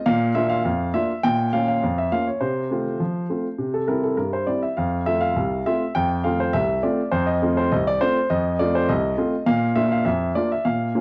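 A polished, up-front grand piano carries this cheerful, playful ragtime passage alone, ranging from C2 to G5 in F major at 102 BPM in a straight 2/4. Its harmony moves from Bb to Bbm, then through F/C and C to settle on F at 4.8 seconds before turning back to Bb at 9.5 seconds. The piano has a present, cassette-tinged character, set in moderate spring reverb and studio ambience on an 11-second home recording cut from a longer piece.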